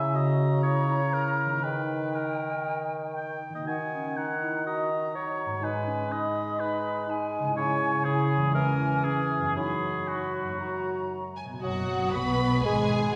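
A short classical passage, cut from a longer piece, opens with a woodwind quartet and concert harp together, in a stormy, restless mood at around 115-125 BPM in 4/4 with a rubato feel. The up-front oboe carries a second line with light vibrato, joined by an airy, tongued concert flute heard at a distance, a dark clarinet set back in the room, and a mellow bassoon supplying accompaniment from low in its register. The harp, thumb-plucked and ringing, spreads arpeggios from deep bass notes up into the treble, while the harmony settles into B major by 3.7 s and moves through minor chords toward a dominant close. At 11.4 s the strings arrive: a violin section takes the melody with a soft attack and lush vibrato, and from 11.6 s a second violin line adds portamento while violas, cellos and double basses fill in beneath, the basses sounding woody. The whole passage sits in a wet, reverberant church or concert hall acoustic that lends the ensemble a spacious glow.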